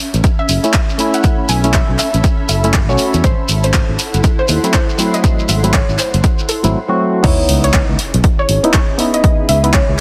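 A cloudy granular pad with sidechain pumping opens this late-night, deep house cut at 120 BPM in C# minor. It is quickly joined by a growly fingered electric bass, a punchy analog drum machine with crash, handclaps and hi-hat, a grainy shekere that drops out at 6.7 seconds, and an overdriven, up-front electronic kick that drives the groove. A soft, round pluck melody dressed in lush chorus and dub echo follows, then hollow, nasal organ stabs with chorus, tape character and dub echo. A background sub drop marks the drop at 7.2 seconds under a heavily compressed, radio-like sheen.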